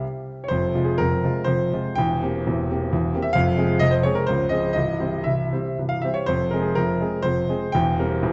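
A lone C5 on a clear, up-front concert grand opens this wistful, capricious romantic triple-time dance, a short excerpt whose dotted rhythms and rubato move over deep bass through minor and major harmonies in a wet recital-hall reverb with a dark, warm sound.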